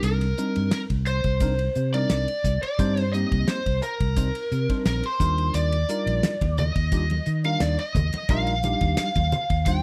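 Electric jazz fusion with a funky, slick mood, this short excerpt moves at 87 BPM in a straight 4/4, tuned slightly sharp with A4 at 441 Hz. A dark, overdriven lead guitar through a small cranked amp carries the melody up front between Bb4 and G5, its picked notes trailed by slapback echo. Beneath it, a worn, slightly out-of-tune tine electric piano plays clean accompaniment through a combo amp, bathed in lush chorus, while a round, punchy fingered electric bass sits prominently in the mix. A damped 1970s drum kit with a fat snare and tight kick covers hi-hat, ride and snare, and bright, thin-skinned congas join at 6.2 seconds, compressed and saturated, until 9.5 seconds. The harmony moves from Cm9 to Ebmaj9 at 5.2 seconds, all captured in a dry, close studio sound with little reverb.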